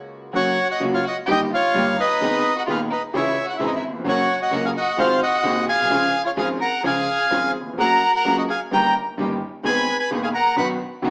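A rubato 4/4 tango at 129 BPM in F# major, this playful, nostalgic fragment sets a reedy, bright bandoneon melody up front over a smooth, vintage concert grand piano accompaniment with deep bass, while a single bowed violin with vibrato and portamento sings an expressive second line and a faint, distant string section adds soft, floating sul tasto stabs, the band heard live together in a stone room with wet reverb and a small-speaker sound.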